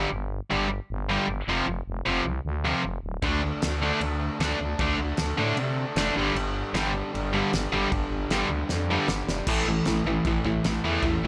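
A growling, thick FM bass sits up front alongside a bright, tight distorted guitar and a biting overdriven guitar, all three driving a raw, angry punk rock riff from the opening moment of this short cut from a longer piece. At 3.2 seconds a double-tracked, compressed distorted guitar joins in the background along with a loose acoustic drum kit with a fat snare, punchy kick and dark cymbals, its room audibly pumping. A drum fill at 8.7 seconds leads into a new section at 9.5 seconds, with the dry sound keeping every part close and raw.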